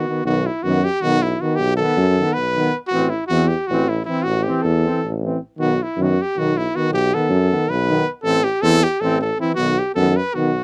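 A dry, close 1970s-style studio sound frames this fiery, restless Balkan brass band excerpt in 7/8 at 316 BPM, where a bright trumpet with light vibrato carries the melody up front over a brilliant, vintage trombone set in the background, a mellow euphonium with vibrato, and a clear, present tuba holding the bass from 0.2 seconds, all moving between B and Am chords in B phrygian dominant.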